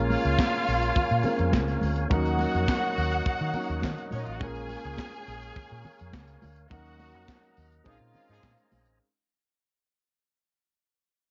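A cut from a longer disco track opens at 104 BPM in Bb minor with nearly the whole band sounding at once, fading out across its nine seconds in a danceable, sultry groove. A round, foam-muted fingered electric bass sits up front beside a tight funk drum kit of handclaps, hi-hat, kick and medium-tuned snare, with gated reverb on the kit, while high-tuned, damped congas with soft hands join at 0.1 seconds in the background. A dark concert grand piano with deep bass supplies the accompaniment, and a mellow tonewheel organ holds sustained chords through a fast rotary speaker, its key click audible. Above them a clear, focused string section bowed with vibrato carries a second line up front until 8.7 seconds, as the chords move between Bbm7 and Ebm7 before landing on Bbm11. The band accents from 6.7 seconds, and at 7.9 seconds a distant, roomy horn section adds loose stabs, all heard through light reverb and a cassette-tape tone with a dulled top end.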